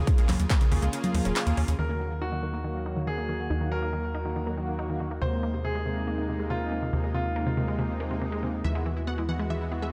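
A lush supersaw pad sits up front in this soaring, driving uplifting trance excerpt, holding slow-attack sustained chords shaped by a filter sweep, analog chorus and sidechain pumping, while a tight sawtooth sequencer bass and a bright, detuned unison pluck arpeggio with delay run beneath it from the start. A punchy electronic kick sounds only briefly at the outset, while a big-room dance kit of congas, handclaps, metallic hi-hats and shaker drives the opening through a break at 0.9 s until 1.8 s, and from 1.8 s a clear concert grand piano carries a second line with delay. At 8.6 s a warbling, vintage unison pluck melody with phaser enters in the background, all of it set in a dreamy mix soaked in plate reverb.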